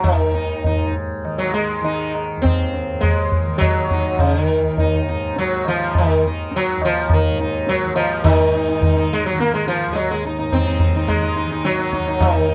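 Hindustani classical music in raga bageshri with a solemn, longing mood, cut from a longer piece in a seven-beat cycle that speeds up throughout, where a bright, plectrum-plucked sitar with buzzing sympathetic strings sits up front over a softly plucked, shimmering tanpura drone and ringing, high-tuned tabla, all captured in a dry, close 1970s-style studio sound.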